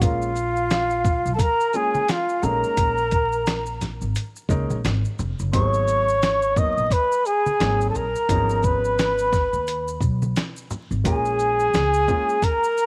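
A breathy, up-front flugelhorn carries the melody with light vibrato and scooped notes over a smoky, nocturnal jazz-hop groove at 87 BPM in G# dorian, joined by a hollow jazz flute second line above, a dark, mellow grand piano, a woody pizzicato upright bass, a gritty, compressed sampler-style drum kit with thumpy kick and fat snare, and close, dry maracas and congas, all set in studio reverb with vinyl crackle in this cut from a longer piece.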